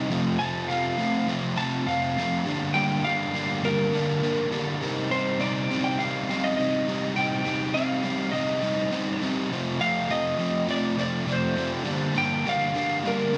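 A crunchy, overdriven, double-tracked guitar sits up front with a bright picked riff and slapback echo, while a dark, slightly broken-up slide guitar carries the melody from 0.4 seconds through slapback echo and analog delay, giving this brooding, cinematic rock excerpt a big arena sound in a wet, spacious reverb over chords moving from F to Gm7 to Cm.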